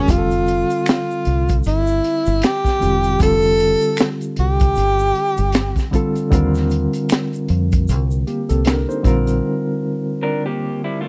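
A breathy, mellow tenor saxophone with vibrato, scooped notes and slapback echo carries the melody until 5.9 seconds in this sensual, warm neo-soul R&B excerpt at 77 BPM in F major, over a reedy, lightly overdriven electric piano with fast tremolo, a round, foam-muted dub fingered bass, a crunchy, gritty breakbeat kit with a high-tuned snare and punchy kick, and soft egg shaker and finger snaps, until a break at 9.4 seconds leaves the piano alongside a dark, slightly broken-up lo-fi electric guitar that enters at 10.2 seconds, all in a dry, close 1970s-style studio sound with light reverb.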